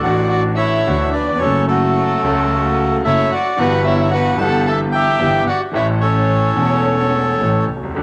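A passionate, elegant tango opens at once with a reedy, airy bandoneon carrying the melody up front, over a brilliant concert grand piano, a bowed double bass and a violin, in a supple rubato feel. The piano's polished accompaniment reaches from a deep bass register upward with long sustain, while the single violin, set in the background, plays a second line with soft attacks, vibrato and expressive portamento. Beneath them, one player bows the double bass sul tasto, giving a dark, woody tone with vibrato and a smooth top, colored by tube saturation. The bandoneon, violin and piano all carry a cassette-tape character, and a wet spring reverb with small-room ambience lends the whole a homespun, intimate sound. The violin stops at 7.6 s and the bandoneon at 7.7 s, leaving piano and bass to ring until this fragment of a longer piece breaks off at 8.0 s.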